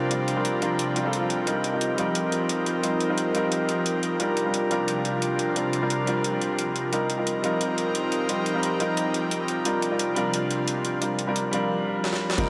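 Dreamy and soulful, this excerpt of liquid drum and bass moves at 176 BPM in a straight 4/4, drenched in a huge ambient reverb that leaves the whole mix floating. A warm, polished grand piano sits up front with long sustain and a touch of delay, while a bright, breathy pad with chorus and sidechain pumping holds sustained chords beneath it, cycling between C9sus4 and F9sus4. In the background, a vibraphone played with soft mallets spins mellow, ringing arpeggios through a low-pass filter and diffuse ambient delay, its medium motor vibrato adding gentle shimmer. A gritty, pitched-up jungle drum kit with a high-tuned snare, hi-hat and crash enters at 0.1 seconds in a small room ambience, and a barely audible electronic swell passes around 1.0 seconds. A drum fill arrives at 12.0 seconds, and at 12.4 seconds a deep, sine-like 808-style bass on F1 lands alongside a very quiet punchy kick and a dark, saturated ride cymbal just as the clip ends.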